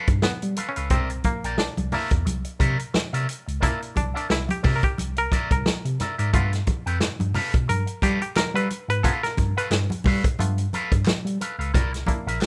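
Funk with an energetic, swung sixteenth-note feel, this rough home demo excerpt moves between G9 and C9 chords under light reverb. A bright, stringy muted clav played through a combo amp takes the spotlight with a solo of stabs across the whole passage, set in plate reverb. Beneath it, an electric guitar with an envelope filter adds clean, twangy picked accompaniment, also treated with plate reverb, while a mellow tine electric piano heard through its built-in speakers carries the bass. A vintage acoustic drum kit sits up front with a punchy kick, medium-tuned snare and hi-hat, and thin-skinned congas add percussion in the background. At 7.0 seconds a crisp, band-limited group handclap joins far back in the mix, lending a human snap to the groove.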